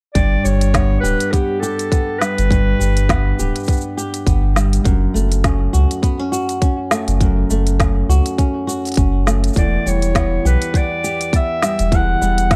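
A dark, warm digital ambience frames this playful folktronica excerpt, built on a swung groove of tight electronic kick, woody snare, smooth hi-hats and cabasa, with a round, sine-like sub bass sitting up front. Fingerpicked flamenco guitar arpeggios, complete with audible finger squeak and a touch of tape echo, run throughout over a G, F#m and Em progression. A distant, roomy clarinet with its own tape echo sings a classical-style solo melody from 0.1 to 4.0 seconds, then returns at 9.6 seconds.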